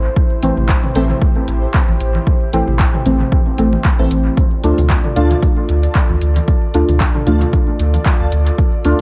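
A warbly, lo-fi tape-like pad with chorus and sidechain pumping opens this hypnotic, meditative dub techno excerpt alongside a soft, vintage deep chord stab carrying phaser and dub echo and a clean, smooth sine sub bass, before a punchy, overdriven kick arrives at 0.2 s, a deep house kit adds handclaps and metallic hi-hats, overdriven electronic toms and congas echo in the background as if re-recorded in a large room, and a crisp, detuned wavetable chord stab sits faintly from 1.0 s over Am and Dm in a lightly reverberant, echo-heavy mix.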